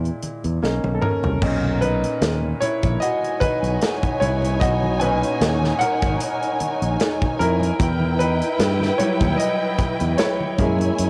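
Lush 1970s-style soul in B major at a relaxed 75 BPM with a light swing, this smooth excerpt is cut from a longer piece and sounds like a home recording on cassette, with light reverb. A brilliant, intimate baby grand piano with audible action noise carries the solo throughout, over a growly overdriven fingered bass, a punchy small-room drum kit with bright cymbals that plays a fill from 0.6 to 1.4 seconds, and very quiet, damped low-tuned congas. At 3.0 seconds a bowed string section enters with vibrato and portamento, its smooth top adding an expressive second line as the chords move from Bmaj9 through Emadd9 to F#9.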